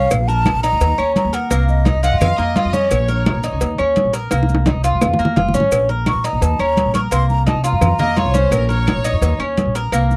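This is a Cuban son and guajira groove at 171 BPM in 4/4, danceable and sultry, taken from a longer piece. Up front, the Cuban tres picks metallic arpeggios on doubled strings, some octave-doubled, while the upright bass plays a dark, thumpy pizzicato line on gut strings. The percussion section is full: soft-handed congas with a thick, damped skin and a saturated edge, round low-tuned bongos and cowbell struck with hard hands, woody vintage claves, and grainy maracas sitting in the background. A breathy concert flute sings the melody with vibrato, tongued and expressive, with lifted highs. A bright, biting violin section adds a distant bowed second line, entering at 2.0 seconds and again near 8.0 seconds, and a drum fill breaks in at 4.3 seconds. The sound is dry and close, in the manner of a 1970s studio recording, with the harmony circling Bbmaj7, Eb, Cm7 and F suspensions.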